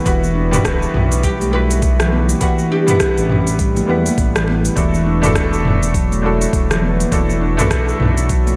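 Organic downtempo with a hypnotic, meditative pull, this excerpt from a longer piece moves in a lightly swung groove beneath a moderate, lush hall reverb that gives it a big arena sound. A felt-muted upright piano carries the accompaniment throughout, intimate and hushed with audible action noise, treated with sidechain pumping, digital delay and slapback echo. Over it, a woody, plectrum-plucked fretless oud with double strings sings the melody from the background, gritty with vintage 12-bit sampler texture and delay, before falling away at 4.4 seconds. A ringing stainless-steel handpan plays arpeggios under soft fingertips, also colored by sampler grit and digital delay. A smooth, mellow synth bass mixing sawtooth, square and triangle tones with ring modulation pumps with sidechain compression, alongside a thumpy, compressed, tape-warm electronic kick. An overdriven, produced electronic kit adds crisp hi-hats, rim clicks, shaker and toms, and very quiet, bright congas sit distant in a large room, as the harmony moves from Emadd9 to Dadd9/E at 4.8 seconds.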